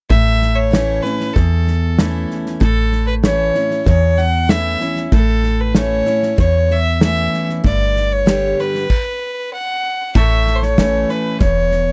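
Heartfelt and down-home, this short excerpt cut from a longer piece is honky-tonk and classic country at a steady, straight 96 BPM in 4/4, set in A mixolydian with a chord move from A to G and back. A clear, earthy fiddle carries the melody up front, a single player with light vibrato and an airy bow. Beneath it, a bright, full-bodied dreadnought acoustic guitar is picked on fresh strings, with audible finger squeak. A woody, round FM bass with a fast attack and dark decay sits low, and a natural, acoustic country drum kit adds a punchy kick, medium-tuned snare, hi-hat and dark crash cymbals. After a stop at 8.9 s, a twangy, clean pedal steel guitar enters in the background at 10.2 s with compressed, fingerpicked slide chords and volume swells. The sound is dry and close, like a 1970s studio with little reverb.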